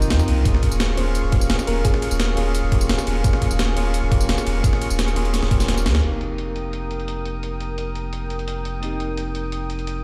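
Bell-like electric piano with tape echo, a lush, warbling chorused pad, a round sine sub bass up front and a gritty, overdriven breakbeat kit with low-pass filtered hats, snare, tambourine and ride open this soulful, rolling liquid drum and bass excerpt at 172 BPM, joined at 0.5 seconds by a thumpy overdriven electronic kick and briefly at 1.0 seconds by a gentle, dark, thumb-piano-like FM pluck with chorus and delay in the background, with a drum fill and a short kick dropout leading to the chord shift from Eb9sus4 to F9sus4 at 6.0 seconds, all played on a big sound system in a bare room with large studio reverb.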